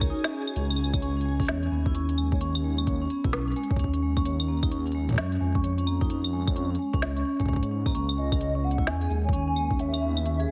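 A mellow vibraphone played with soft mallets stands out up front, ringing through arpeggios with a slow motor vibrato and a digital delay trailing its metallic tone. This eerie, glitchy IDM excerpt, cut from a longer piece, moves at 130 BPM in 4/4 with a 62% swing on the sixteenths, in C# minor. Underneath, a dark, detuned sawtooth bass rumbles up front with a beating unison, while an overdriven soft electronic kick and an organic electronic kit of woody snare, crisp hats, cabasa and claves, with overdrive and delay of its own, carry the groove. A very quiet, lo-fi, tape-like pad and a twinkling granular shimmer appear only in the brief opening moments before the main section settles in at 0.6 seconds, over harmonies moving from D#m11 through C#7sus2 and D#9sus4 to C#madd9. At 8.2 seconds a warbling, nostalgic lead enters high with chorus, vibrato and delay. The whole mix carries light reverb and a heavily compressed, radio-like sound.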